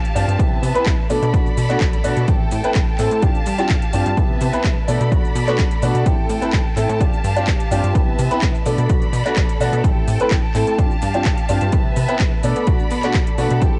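A cassette-worn home recording with its highs rolled off above 10.6 kHz frames this nostalgic, funky slice of filtered disco house at 127 BPM, cut from a longer piece. A dry, up-front electronic kick and an overdriven house kit of handclaps, metallic hats and shaker drive the groove. Meanwhile, a plucky sawtooth analog bass with a fast, decaying filter pluck pumps alongside a clear concert grand piano coloured by phaser and 12-bit sampler grit, while a lush studio violin section holds sustained chords with vibrato, cycling through Cmaj7, Bm7, Am7 and G7sus4 as sidechain pumping makes the strings, bass and piano breathe.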